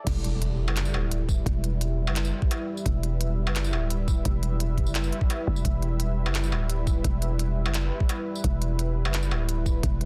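Half-time drum and bass at 172 BPM in E minor, this tense, cinematic excerpt is cut from a longer piece and lands straight on a drop at 0.1 seconds, holding on an E minor chord throughout. A dark analog pad, built from detuned sawtooth and triangle tones with a sub octave, sustains moody, full-bodied chords from the opening, its slow attack coloured by chorus, vintage 12-bit sampler grit and sidechain pumping. Up front, a growling 808-style bass with a buzzy, tube-saturated edge and fast, decaying attack sits low in the register. An electronic kick drum knocks with tape-warm weight, while an industrial drum kit, re-recorded in a large room, adds crisp hats, handclaps, tambourine, struck metal and crash cymbal. A very quiet electronic impact marks the start of the drop, ending by 1.5 seconds, and the whole sits in a digital ambience with a dense, heavily limited modern master.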